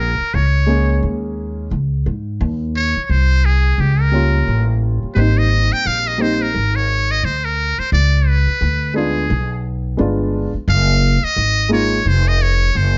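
A muted trumpet and a plucked upright bass open this smoky, nocturnal jazz-hop excerpt together, setting a swung hip hop groove in 4/4. The trumpet carries the melody as a solo through the whole passage, its metal mute giving a buzzy, thin, breathy tone with light vibrato and a soft attack, and a slapback echo trails each phrase. Underneath, the upright bass sits up front with a woody, thumpy pizzicato sound on steel strings. A dark upright piano enters at 0.7 seconds to supply mellow, intimate accompaniment, its audible action noise lending a vintage character before it drops out at 12.0 seconds. The harmony moves from Bbm7 through Eb7 and Abmaj7 to Db7b9, settling on Gbmaj7sus2 near the end of this brief section. A light reverb and a softened top end keep the mix close and late-night in feel.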